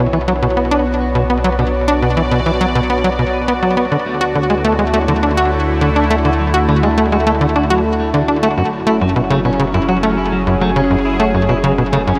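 Driving along at 103 BPM in a straight 4/4, this expansive, cosmic ambient excerpt pairs a punchy, nasal sawtooth sequencer bass riff with delay up front against a bright, detuned pad of sustained chords with chorus, a deep, round sine sub bass underneath, and clean, picked electric guitar arpeggios with delay fading in from the background, all moving through Bm, D and F#m7 inside a huge ambient reverb.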